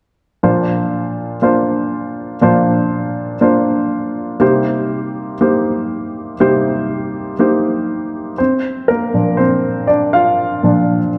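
Pop in an anthemic, uplifting mood, this short excerpt from a longer piece features a warm, intimate baby grand piano sitting up front with audible action noise and short sustain, moving from Bbadd9 to Cm7 over a lightly swung 16th-note feel before playing alone from 8.4 to 11.2 seconds, all bathed in a dark production and a moderate concert hall reverb.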